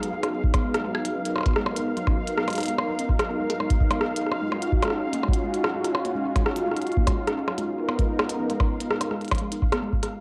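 A smooth, detuned sawtooth pad sustains G#m7, D#m9 and C#13 chords beside clicky, delay-treated glitch percussion and a resonant, bubbling texture of random filter steps; a warbling, dusty triangle-and-sawtooth pluck with a sub octave joins with arpeggios at 0.1 s, and a dry, deep, up-front electronic kick arrives at 0.4 s, forming a cerebral, glitchy IDM excerpt at 147 BPM in G# dorian, captured as a lo-fi home cassette recording with modest booth ambience.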